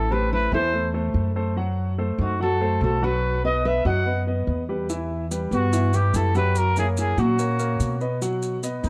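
A straight 4/4 pulse at 144 BPM drives this short cut of Cuban son and guajira, carrying a nostalgic, warm mood. Up front, a breathy trumpet sings the melody with a soft attack and gentle vibrato, its whispered, intimate tone sounding slightly distant and roomy. Beneath it, a fingerpicked nylon-string guitar adds a dark, full-bodied second line, while a clear concert grand piano spins arpeggios with long sustain, deep bass and audible action noise. A woody, thumpy upright bass on gut strings is played pizzicato and sits prominently in the mix, and grainy, mellow maracas join at 4.9 s as if from a small room. The harmony moves through Am, F#dim, B, Em and F#, returning to B, all within a dark, warm production with little reverb.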